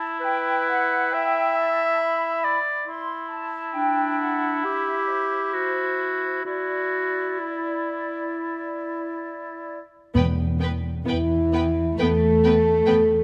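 Mellow, roomy French horns bring sustained chords from 11.1 seconds into this bittersweet, moving cinematic passage in a rubato 4/4, which opens on a bright, up-front clarinet, a warm oboe with light vibrato and an airy, distant large flute ensemble before giving way at 10.2 seconds to soft-attack, sul tasto strings: a floating violin melody in the background, a rich, distant second violin line, pure violas, a dark, woody double bass section and, from 11.1 seconds, close cellos beneath the horns, joined by round, soft-mallet timpani, all set in a moderate scoring-stage reverb.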